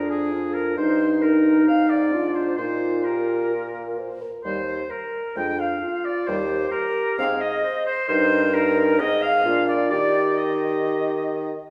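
In a straight 4/4 at 131 BPM, this graceful, spirited classical-period movement for wind quintet in Eb major, cut from a longer piece, sets a hollow, airy flute melody with vibrato and a crisp attack in the background against an up-front oboe second line with light vibrato and a soft attack, while a mellow clarinet and a clear French horn accompany and a bassoon carries the bass, all in wet concert-hall reverb as the harmony comes to rest on Eb at 9.9 seconds.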